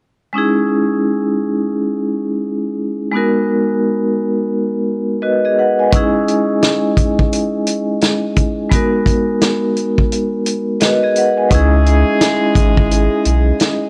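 A dry, gritty boom-bap hip-hop excerpt with a dark, tough mood opens on a metallic, ringing, cassette-tinged vibraphone with motor vibrato comping over minor chords, briefly filling before a punchy, rolled-off soul drum kit with 12-bit sampler grit enters at 5.9 seconds, its kick dropping out at 10.1 seconds before jazzy horn stabs with tape echo and a deep, round, saturated sub bass join at 11.5 seconds.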